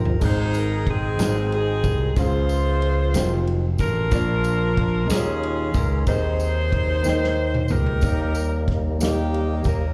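A warm, up-front saxophone section carries the melody with jazz-style vibrato over a dark, mellow concert grand, a bright, growly fingered electric bass, a punchy natural drum kit with a fill from 7.0 to 8.0 seconds, a jingly tambourine, and a fat, lightly overdriven tonewheel organ with slow rotary speaker that returns in the background at 8.0 seconds, in this hopeful, soulful slow gospel excerpt in 6/8 at 62 BPM in Ab major, heard live through a club PA with small-room ambience.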